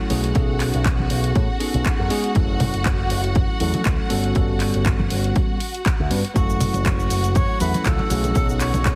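A heavily compressed, radio-like sound with light digital ambience frames this nine-second cut from a longer nu-disco track, groovy and cosmic at 120 BPM in 4/4 with a gentle swing on the sixteenths, set in F# dorian. A bell-like tine electric piano, clean and direct with analog chorus and digital delay, carries the accompaniment from the start alongside a lush symphonic string section holding sustained, vibrato-rich chords that pump against the sidechain. A picked electric bass through an envelope filter gives a punchy low end, while a tape-tinged house kit of handclaps, hi-hat and shaker sits in small room ambience with a layered electronic kick entering at 0.4 seconds. Very quiet, damped congas with a thin skin and soft hands add band-limited vintage color from 1.0 seconds. The harmony moves through B13, F#m7 and Gmaj9#11 before returning to F#m7, where a breathy, whispered tenor saxophone with light vibrato and digital delay enters at 6.4 seconds for an intimate closing phrase.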